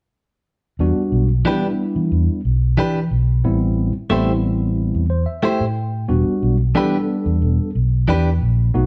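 Bright, compressed clean electric guitar stabs cut up front over a round, punchy fingered electric bass and a tine electric piano in this brooding, mournful blues excerpt in E minor at 91 BPM, where the band plays live in one room with moderate large studio reverb, the electric piano adds a fill from 4.8 to 6.1 seconds, and the chords move from Em7 to Am7 and back to Em7.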